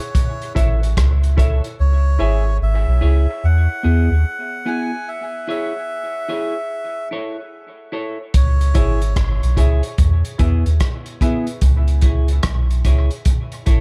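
A deep, round sub bass sits up front through nearly the whole of this hypnotic, heavy dub reggae cut, entering at 0.6 s with a soft, sustained tone and a fast attack. A gritty, saturated breakbeat kit of hi-hat, tight kick and rim click opens the passage, falls away during a break from 1.8 to 8.3 s, then returns up front with a mid-forward, rolled-off sound. A reedy, breathy melodica carries the melody with a nasal, dark tone, trailing dub echo until 9.2 s. A clean, picked semi-hollow guitar provides accompaniment with a subtle chorus and echo, while a grand piano with short sustain adds echoed stabs at the start and again near the end. The swung sixteenth feel and the cycling C#m, E and A chords, bathed in studio reverb, give this fragment of a longer piece its slow, trance-like pull.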